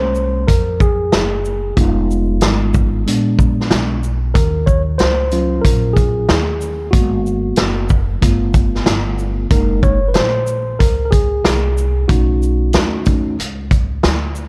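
Mellow and nocturnal, this short jazz-hop fragment features a clean, direct tine electric piano, which takes a solo over lush chords such as Bbm9, Ebm7 and G9 until 13.4 seconds. Underneath, a pizzicato upright bass with steel strings sounds woody and growly, while a vintage drum kit sits up front with a punchy kick, medium-tuned snare, hi-hat and shaker in a swung hip hop groove. The dark production has a rolled-off top on the drums and light studio reverb, giving the whole piece a warm, late-night glow.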